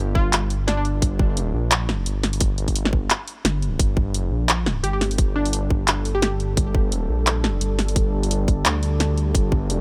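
A deep, rumbling detuned saw bass anchors this heavy, cinematic half-time drum and bass excerpt in G minor at 173 BPM, its beating sawtooth unison sitting up front beside a tight electronic kick and a layered kit of cracking snare, handclaps and hi-hat with a swung sixteenth feel. A glassy wavetable pluck with chorus and digital delay flickers in briefly at the start and again from 4.8 seconds, while a moody, evolving ambient pad with built-in reverb and sidechain pumping enters at 4.6 seconds to hold a Gmadd9 chord. The mix is otherwise dry, with a faint mains hum underneath.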